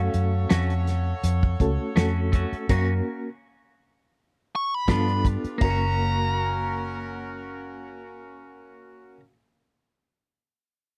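Straight-eighth soul blues with a smoky, soulful mood, this short cut sets a smooth overdriven lead guitar melody over a reedy, slightly out-of-tune electric piano with fast tremolo, distant bright horn chords, a round, foam-muted fingered bass and a fat-snared soul drum kit up front, with twangy clean guitar stabs in spring reverb, a stop from 2.7 to 4.9 seconds and the drums dropping out at 5.8 seconds.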